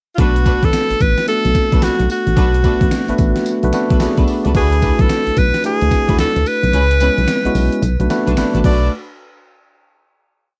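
Punchy and confident, this short new jack swing R&B piece sets a clear, up-front tenor saxophone melody over mellow tine electric piano stabs, lush bowed string stabs, a round, bouncy FM synth bass, a hard-swung, overdriven 80s drum machine with gated reverb on the snare whose kick drops out from 6.7 to 8.9 seconds, and a grainy, very quiet tube shaker, all in a dry, close studio sound before a final hit.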